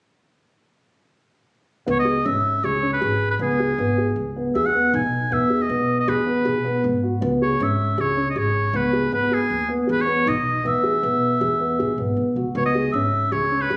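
At 1.9 s a clear oboe, a dark grand piano and a pizzicato upright bass enter together in this pensive, hypnotic piece of contemporary chamber music, cut from a longer work. It moves at 158 BPM in an uneven 7/4 with a straight feel, in C# minor and tuned slightly flat to A4 = 437 Hz. The soft-attacked oboe carries a classical-style solo melody up front. Beneath it the mellow, boxy piano plays arpeggios, also close and present, while the woody, steel-strung bass holds the low line. The harmony alternates between C#7 and E before settling on C# minor at 12.6 s, and all three parts stop at 13.8 s. The sound is that of a phone recording in a wet recital hall, with extra club reverb and compression adding a thick, roomy wash.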